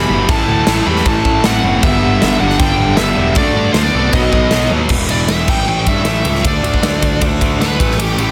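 A straight 4/4 pulse at 156 BPM drives this heavy, propulsive hard rock excerpt, where an up-front big rock drum kit with a punchy kick, medium-tuned snare, crash and ride cymbals anchors a growly fuzz picked electric bass, a high-gain distorted guitar riff sits in the background alongside an overdriven electric guitar and a very quiet, double-tracked sludgy distorted guitar, and a dark lead guitar through a small cranked amp carries a second line until 4.7 s. A bright high-gain lead guitar with plate reverb and digital delay plays the melody before taking a solo at 4.9 s as the other two riff guitars drop out, all inside a light small-room ambience and a dense, heavily limited modern master.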